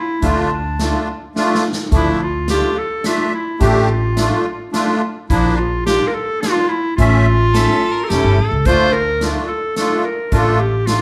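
A bright, classical-style clarinet carries the melody up front in this soulful, bittersweet klezmer excerpt in D minor at 107 BPM in 3/4, backed by a reedy, shimmering musette accordion, a woody, thumpy pizzicato upright bass and an airy, polished street-band drum kit with a boomy kick that plays a fill at 1.4 seconds, while a clear, focused bowed violin with vibrato adds a brief second line from 7.5 to 8.5 seconds, the band playing live together in a large, reverberant studio room.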